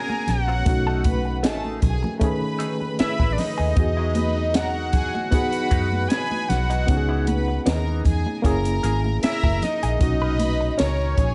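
A smooth, reverb-washed excerpt of lush 1970s-style soul in B major at 77 BPM, where a fat, detuned analog lead with phaser carries the melody over floating sul tasto strings, a barky, lightly overdriven electric piano with fast tremolo, very quiet mellow French horn chords, a clean, scooped wah guitar riff, high-tuned ringing congas, a round, foam-muted bass up front, and a dark, punchy cocktail drum kit, moving through lush extended chords from G#m11 to Bmaj9.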